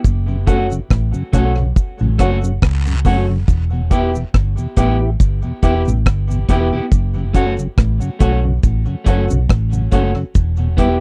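Dub reggae at a slow 70 BPM with a lightly swung 4/4 feel, deep and meditative, moving between F#m and Em: a round, hollow-body fingered electric bass sits up front beside a dry reggae drum kit with a tight kick, hi-hat and rim click, while a mellow tonewheel organ with vibrato hums in the background, a slightly broken-up picked electric guitar and woody upright piano stabs carry tape echo, and faint cabasa and guiro add echoed percussion, all in a close, dry 1970s-style studio sound.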